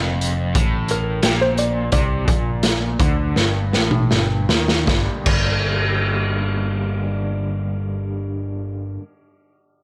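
A small room holds this mysterious, hypnotic psychedelic rock fragment in G minor at 77-90 BPM, slowing early on as a bright, crunchy, double-tracked overdriven guitar riff runs through tremolo and a low-pass filter over a round, dark picked bass, while an up-front, gritty garage drum kit with a boomy kick and pumping room sound plays a fill from 3.4 seconds before dropping out at 5.5, and a twangy, plunky fingerpicked open-back banjo solo, filtered and wrapped in slapback echo, enters at 0.9 seconds.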